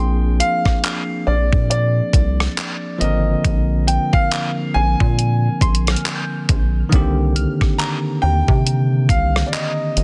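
A warm grand piano carries a moody, longing contemporary R&B melody with delay from the first moment, over bell-like tine electric piano accompaniment, a rubbery square-wave bass sitting up front and a soft, dark chorused pluck in the background, as a gated 80s drum machine with a thumpy kick, handclaps, hi-hat and rim click joins at 0.4 s and the harmony moves from Bb9 to Cm9 at 6.9 s in this dry, densely limited, swung fragment of a longer piece.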